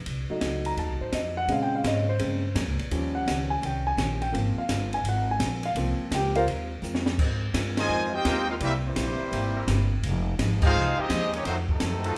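A joyful 169 BPM big band swing groove in Ab major rides on a woody, pizzicato upright bass and an up-front drum kit with dark cymbals, a high-tuned snare and a boomy kick. A concert grand piano with deep bass and short sustain takes a solo until 7.2 seconds, closed off by a drum fill, while a bright, full-bodied picked acoustic guitar sits in the background. At 7.8 seconds a tight, present trumpet section with light vibrato carries the melody over a soft-attack trombone section playing a second line, and from 8.2 seconds a clear, vintage-toned trombone section holds sustained chords, with band accents landing at 7.7 and 10.6 seconds in a moderate large studio reverb.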